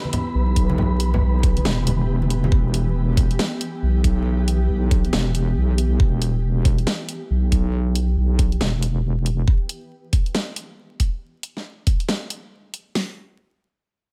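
Heavy and dark, this deep dubstep excerpt moves at 138 BPM in a half-time feel with swung 16ths, sitting on a single E minor chord until the harmony drops out at 13.0 seconds. A wobbling, saturated wobble bass with a square-and-sine character, fast attack and chorus sits up front in the low register, mellow yet compressed and weighty. Two layered electronic drum kits carry the groove, one adding a knocking kick, both built around a huge snare and hi-hats in a small room ambience, with the louder kit placed up front. Above them, a cloudy, evolving granular pad holds sustained chords with slow attack, long release and built-in reverb until about 9.4 seconds. In the opening seconds, ringing acoustic congas played with hard hands sit in the background alongside an airy, breathy, wind-like tuned noise texture, both stopping by 2.5 seconds, while vinyl crackle adds a layer of digital ambience.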